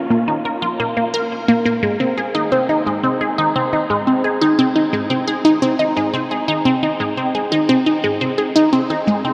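Ambient and cosmic, this short excerpt is a mysterious fragment cut from a longer piece, moving in a steady, straight 4/4. A single resonant blip pluck plays alone from 0.0 to 9.3 s, its notes spanning Ab3 to Bb4. The synth sound is juicy and squelchy, built from sawtooth and triangle tones with a noise layer and a sub octave beneath, and a filter pluck with a moving notch gives each note a quick attack and short decay. Phaser and delay color the bright tone, which sits up front in the mix. Around it hangs a huge, wet reverb with an 8.2 s tail, placing the sound in a vast, echoing space.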